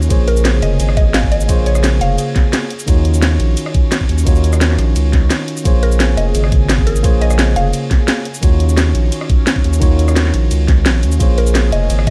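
Rolling and melancholic, this short cut from a longer liquid drum and bass track moves at 173 BPM in Bb minor, cycling between Bbm9 and Ebm9 chords. A deep, thick, saturated sub bass sits up front beside a knocking electronic kick, while a layered kit adds a cracking snare, bright hats, ride cymbal, rim click and shaker, all re-recorded in a small room. A bright, clean tine electric piano carries the accompaniment through tape echo, and an airy, breathy pad holds sustained chords in the background with chorus and phaser. A woody, round, mallet-like synth pluck states the melody in short phrases, first from 0.3 seconds and again from 5.8 seconds, colored by chorus, phaser, delay and a cassette tape character. A brief break at 5.3 seconds punctuates the groove, and the whole mix has a dark, warm production set in digital ambience.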